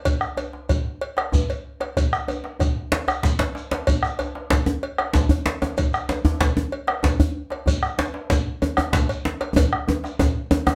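Earthy and festive, this short cut from a longer West African traditional drum ensemble piece rolls along in a straight 12/8 feel, with a round, vintage-sounding bombo up front, a close, dry metallic cowbell, a medium-tuned djembe played with soft hands, and a grainy, mellow shekere heard from a distance. A second djembe, warm and deep with metal rattles, joins at 2.9 s and sits prominently in the mix. Drum fills break through at 3.1 s and again at 9.6 s, all within a moderate studio reverb.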